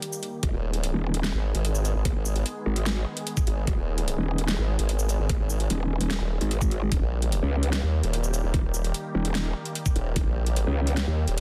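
A growling, saturated bass and a detuned, sawtooth-edged formant-sweep wobble bass dominate this aggressive, menacing excerpt of heavy wobble dubstep at 148 BPM in half-time, both sitting up front with chorus and overdrive in the low register, moving from G# minor to D# at 6.9 seconds. After a brief break, a knocking electronic kick joins at 0.4 seconds beside a layered drum kit of huge snare, metallic hi-hats and shaker, both carrying studio reverb. Underneath, a lush, bright supersaw pad holds sustained chords, pumping with sidechain and shaped by a low-pass filter, all within a dense, heavily limited modern master.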